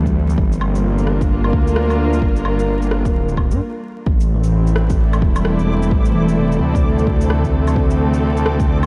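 Soaked in cathedral reverb and vinyl crackle, this rainy, nocturnal future garage excerpt at 130 BPM in swung 4/4 and A phrygian sets a menacing, detuned saw bass and veiled, muted studio strings pumping up front, while an overdriven deep kick and a layered electronic shaker, woodblock and rim click carry 12-bit sampler grit, a bell-like tine electric piano with diffuse delay sits in the background, heard briefly at the start and again from 4.3 seconds, and a reversed granular swell joins at 4.4 seconds as the chords move from Gm7 to Am7 and D7(no3).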